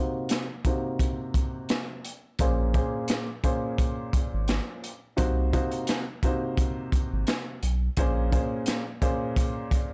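A woody, mellow upright piano sits up front in this moody boom-bap hip-hop excerpt, its vintage cassette-tape colour shaped by a filter sweep across the opening section as it moves between Cm7b5 and Bbm7 in Bb minor. A crunchy breakbeat kit joins at 0.3 seconds with a tight kick, a medium-tuned snare and hi-hat, its gritty, saturated sound rolled off at the top and placed close in a studio room. The groove moves at 86 BPM in 4/4 with a light swing on the 16ths. A deep, thick sub bass with a fast attack and sustained notes comes in at 2.4 seconds and drops out at 8.4 seconds, just after a new section begins on Bbm7. The mix is dry and dark, with little reverb, leaving the parts close and intimate.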